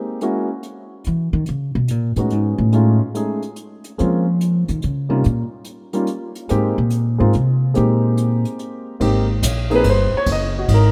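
Jazz piano trio in a warm, swinging 3/4 waltz at 143 BPM in Ab major, where a woody, plucked upright bass takes an up-front solo until 9.0 seconds over brushes, dark cymbals and a boomy kick from the small-room drum kit, before the deep-voiced concert grand piano takes its own solo from 9.0 seconds, all heard in a rough home demo mix with light reverb.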